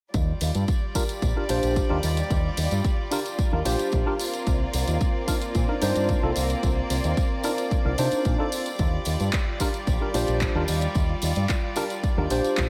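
Nu-disco at 111 BPM in 4/4 with a sleek, groovy mood, this short cut moves from Ebmaj9 to Cm11 and back, set in a dreamy mix soaked in plate reverb. A punchy, layered electronic kick and an up-front picked electric bass through an envelope filter drive the groove, joined by a house kit of handclaps and hi-hat, plus a compressed, saturated tambourine sitting in the background. An intimate chamber violin section holds soft-attack sustained chords with light vibrato and sidechain pumping, while a worn, slightly out-of-tune tine electric piano enters at 0.9 seconds, lightly overdriven through a combo amp with chorus, delay and a low-pass filter.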